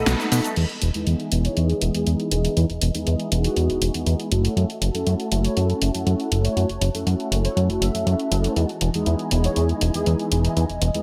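Sunny and feel-good, this filtered disco house cut moves at 120 BPM in a straight 4/4, set in E major and drifting from a B7 into Emaj7 and F#m7 before returning to Emaj7. A plucky analog bass sits up front, punchy and funky with a fast attack and decaying notes. The tape-warm house drum kit enters at 0.1 s with a band accent, its punchy snare, warm hats, shaker and crash cymbal giving a layered, produced groove. Mellow synth brass supplies round, dark, detuned accompaniment through chorus, phaser and a low-pass filter, while a phased string machine swirls in the background with slow-attack sustained chords and vintage 12-bit sampler grit. From 1.4 s a bold, fat analog synth brass carries the melody in the background, its wave-folded, ring-modulated tone softened by chorus and filtering, as a filter sweep runs from 0.6 s onward under light reverb.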